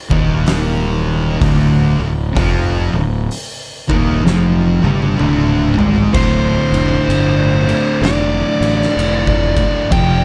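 A growly, punchy fuzz bass sits up front in this heavy, hypnotic stoner and doom metal piece at a slow, swung 64 BPM, anchoring the low end beneath two thick fuzz guitars riffing in the background, a very quiet double-tracked crunchy overdriven guitar and an oversized low-tuned drum kit with a boomy kick, fat snare, dark cymbals and a gritty, pumping big-room sound that plays a fill from 4.3 s, before a distorted fuzz lead guitar enters up front at 6.1 s as the music settles into D minor, all wrapped in a warm studio ambience.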